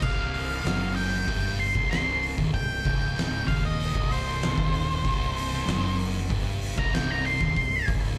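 Ominous and hypnotic, this short stoner and doom metal passage is cut from a longer piece recorded at a live gig and stays on a single chord throughout. An octave-fuzz lead guitar carries a solo up front, its dark, distorted tone thickened by slapback echo and delay before it drops out at 7.9 seconds. Beneath it, two thick fuzz guitars churn out a low picked riff in the background, one murky and the other warm, with slapback echo on the second. A growling fingered electric bass, bright, overdriven and punchy, sits in the deep end alongside an oversized low-tuned drum kit whose boomy kick, fat snare and dark cymbals sound saturated, gritty and prominent in a big, pumping room. Heard through the venue's PA, the whole gig carries a light club reverb.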